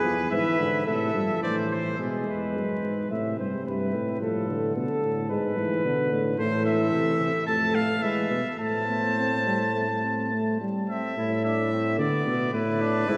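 A straight 4/4 pulse at 108 BPM drives this serious classical canzona for brass ensemble, an imitative passage cut from a longer piece that settles into A minor. A bright trumpet with light vibrato carries the melody up front, drops out at 2.0 seconds and returns at 6.4 seconds. Beneath it a vintage-toned flugelhorn holds the second line, a mellow, smooth-topped euphonium accompanies until 10.9 seconds, and a distant, roomy tuba anchors the bass, all bathed in a cathedral reverb with faint vinyl crackle and studio ambience.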